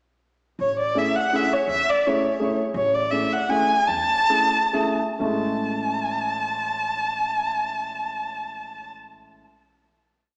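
The recording sits in a reverberant church or concert hall, its long, wet tail surrounding a small-speaker tone. This is a short, complete musette waltz in three, whirling and charming in mood, opening on an Amaj7 chord. A dark, expressive violin carries the motif-based melody up front from 0.6 seconds, bowed by a single player with vibrato and portamento and shaped into sentence-like phrases. A warm, woody upright piano sits up front as well, playing close-voiced chords in a backbeat rhythm, while a thumpy pizzicato upright bass on gut strings plays root and fifth on the main beats. The pace slows between 2.8 and 5.2 seconds, and the piece closes on a final chord, with the violin dropping out just before the piano and bass finish.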